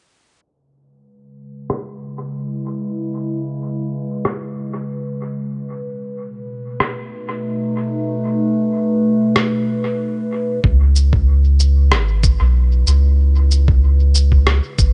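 A warbling, tape-like pad opens this hazy ambient dub excerpt at 1.4 seconds, its detuned square and triangle tones, ring modulation and chorus giving sustained C#m7 and B7 chords a dark, nostalgic, lo-fi glow within their own reverb. A sampler-style electronic rim click and shaker follows almost at once, pitched down, compressed and muffled by low-pass filtering, re-recorded in a small room and trailed by dub echo. Filter sweeps run across both the drums and the pad through the opening stretch, holding the mood deep and clouded at a relaxed 94 BPM in 4/4 with a gentle swing on the 16ths in C# minor. At 10.6 seconds the music returns to C#m7 as a soft, round sub bass with a fast attack and a thumpy, pitched-down electronic kick drop in up front, while the pad fades in. The overall sound is softened by light reverb and a low-pass filter that rounds off the top end.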